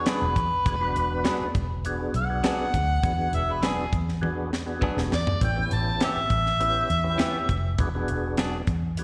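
A gritty, rollicking straight-eighth soul blues opens with an overdriven harmonica playing a jazz-style solo with light vibrato and scooped notes, over a fat, percussive tonewheel organ with key click, chorus vibrato and a slow rotary speaker, and a dark, round, foam-muted fingered bass. Compressed, cleanly picked direct guitar stabs and a dry funk kit with a tight kick and high-tuned snare join, the drums playing a fill from 4.2 to 5.4 seconds that leads into the harmony's move from E9 to A9, and the harmonica drops out at 7.8 seconds as the E9 returns. The sound is that of a live gig heard through the venue's PA, with recital hall reverb and plate reverb and slapback echo on the harmonica, organ and guitar.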